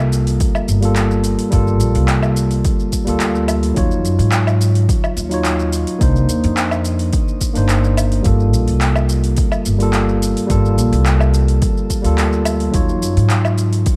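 A dark, warm production with light reverb frames this relaxed, smooth sunset chillout clip, in which a clean, up-front tine electric piano with digital delay and shimmer reverb moves through minor ninth chords over a woody, thumpy pizzicato upright bass, while an overdriven deep house drum kit of handclaps, metallic hi-hat, shaker and woodblock joins at 0.1 s and a punchy, overdriven electronic kick drum enters at 0.4 s, both drum parts carrying studio reverb.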